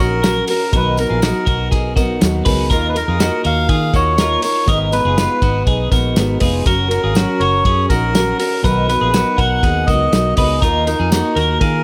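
Jangly indie pop at 121 BPM in a straight 4/4, this bittersweet, restless fragment of a longer piece cycles through Gb, Bmaj7, Ebsus2 and Abm under light reverb. A reedy, breathy melodica carries the melody up front with a touch of delay, over a full-bodied fingerpicked steel-string acoustic guitar, bright, twangy twelve-string electric guitar arpeggios and a round, foam-muted vintage electric bass. A cloth-damped, thuddy drum kit with dark cymbals and a tight kick comes in at 0.2 seconds, while a jingly tambourine sits close and dry in the background.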